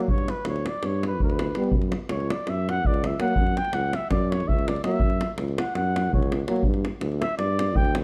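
A dark trumpet with light vibrato and a smooth top carries the solo in a polished classical style, sitting up front throughout this fiery, restless Balkan brass band excerpt in 9/8. Beneath it, a tuba anchors the bass with warmth and gentle vibrato, also placed prominently. A clear euphonium and a vintage, band-limited French horn supply accompaniment in the lower middle register, with the horn tucked into the background; both stop at 6.6 seconds. A deep acoustic davul drives the rhythm, its compressed, saturated sound pushed to the front. The harmony moves from G to F#5 and then to G5, and the close, detailed recording carries only light reverb.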